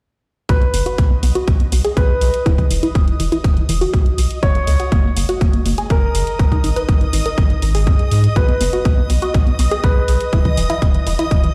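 Progressive house at 122 BPM in B major, this short cut from a longer piece feels uplifting and expansive, moving through B, Esus2, D#m7/F#, G#5 and back to B before landing on E5. A punchy, overdriven electronic kick sits up front, joined by an overdriven electronic hi-hat and a deep, thick saturated sub bass that pumps with the sidechain. A tight, driving sequenced synth built from detuned sawtooth and square waves spins arpeggios through chorus, phaser and delay, with a filter sweep running across it from 0.5 to 11.5 seconds. A dark, mellow baby grand piano carries a small melody with long sustain and delay, stopping at 10.7 seconds. From 1.1 seconds a reversed, dreamy granular texture swells high above, bright with its own reverb and also pumping, while the whole mix sits in a large, roomy studio space.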